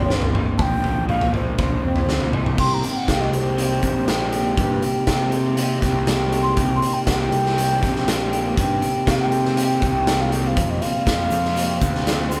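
Indie rock in C minor at 120 BPM, this restless, moody excerpt sounds like a band playing live in one room with light reverb. A raw garage drum kit sits up front with a punchy kick, medium-tuned snare and bright cymbals, its gritty, saturated sound filling a pumping stone room. Beneath it, a fuzz-driven picked electric bass adds overdriven punch, while an electric guitar through a small old amp plays a slightly broken-up, compressed riff bathed in spring reverb. Over the opening Bbadd9 chord, a mellow alto ocarina carries the melody, then takes a solo from 2.6 seconds as the harmony moves to Cm7, its airy clay tone tongued and expressive. At 10.6 seconds the chord shifts to Fsus4 and a very quiet, grainy egg shaker joins for the final moments.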